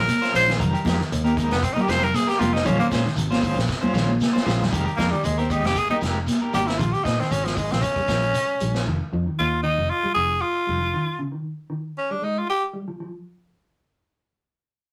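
A raspy, edgy tenor saxophone leads this funky, hypnotic afrobeat excerpt, soloing up front with vibrato and scooped notes in a close-miked, pop-style voice. Beneath it, a dark, clean electric guitar plays fingered arpeggios with tremolo in the background, while a second, slightly broken-up electric guitar adds picked stabs, also with tremolo. A round, foam-muted fingered bass anchors the harmony as it moves between Bbm9 and Fm11 before drifting into open, chordless passages and a rootless Dbsus2. A vintage drum kit with a tight kick, medium-tuned snare and gritty, rolled-off top plays a fill just before the groove moves on, joined by ringing, high-tuned congas and a grainy, very quiet shekere. The congas and the stabbing guitar drop out at 6.7 seconds and the drums and shekere at 8.9 seconds, leaving the saxophone, bass and mellow guitar to carry on in a rough rehearsal-room sound with warm saturation and moderate reverb.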